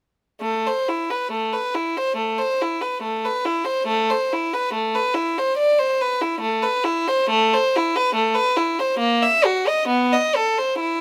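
A close, up-front solo violin with a rich, reedy gut-string tone sounds in light reverb, bowed by a single player in period style. This grave, solemn fragment of a baroque-style suite movement for unaccompanied violin sits in A minor at about 69 BPM in 4/4, its beats uneven and pulled by rubato. The violin plays alone from 0.4 to 11.0 seconds, ranging from A3 to E5, with tuning set at A4 = 443 Hz.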